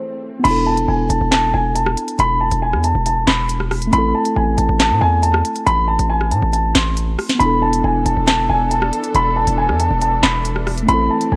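A dark, boxy concert grand piano carries the ominous, cold melody up front with audible action noise in this half-time drill excerpt, over a low-pass filtered, mellow tine electric piano. Veiled, con sordino strings sound briefly at the start and return at 7.4 seconds, while a heavy, saturated 808-style bass and an electronic drill kit with a sharp snare, crisp hi-hats, handclaps, rim clicks and crash enter at 0.4 seconds. Light reverb and a worn, warbling cassette quality with pitch drift and lossy artefacts colour the whole recording.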